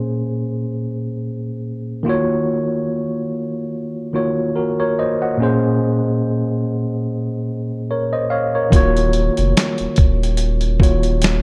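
A clean, low-pass-filtered tine electric piano opens this reflective, nostalgic lo-fi hip hop passage on its own, drifting through Bbm7 and Ebm7 chords in Eb dorian at 72 BPM with a gentle 16th-note swing. At 8.7 seconds a deep, saturated sine sub bass and a gritty, tape-toned sampler-style drum kit join, bringing a thumpy kick, fat snare, hi-hat and finger snaps. The mix is dark and dry, with the parts kept up front, and the passage is cut from a longer piece.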